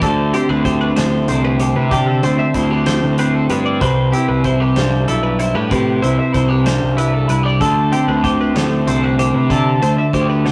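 A steady 6/8 pulse drives this wistful, intricate math rock and midwest emo excerpt, where a twangy, compressed twelve-string electric guitar picks out the accompaniment while a second, up-front twelve-string traces bright, clean arpeggios higher up, moving from D7sus4 to Cmaj7 and back. Beneath them, a punchy, fuzz-overdriven picked bass sits prominently, and a loose indie drum kit of hi-hat, tight kick and fat snare plays softer in the mix with a rolled-off top. The whole take has the rough feel of a rehearsal-room recording, with tube saturation and a moderate stone-room reverb.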